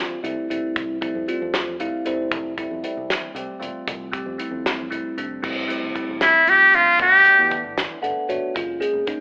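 A bell-like electric piano with a phaser opens this bright, soaring 6/8 jazz fusion fragment in F major at 77 BPM, joined at once by a round, background fingered bass and a damped 70s kit with a fat snare and dark cymbals, before a buzzy, metal-muted trumpet steps up front for a brief scooped solo at 6.2 seconds as the chords shift from Fmaj9 to Gmaj9, later settling on Gbmaj9, all heard through a telephone-like filter in a large studio room.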